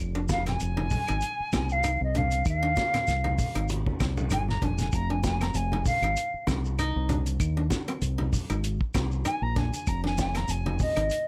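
A mellow silver concert flute leads this intense, defiant afrobeat excerpt, soloing up front over a single Fm7 chord with a pure, expressive tone, vibrato and tongued phrasing. Beneath it, a round, punchy fingered electric bass sits forward, a bright koto plays fingerpicked arpeggios, and a damped 70s drum kit with a fat snare and tight kick holds a lightly swung 16th-note feel, breaking into a fill at 3.7 seconds. Low-tuned congas played with soft hands sound distant, while a grainy shekere and woody claves in the background round out the percussion within a small room ambience.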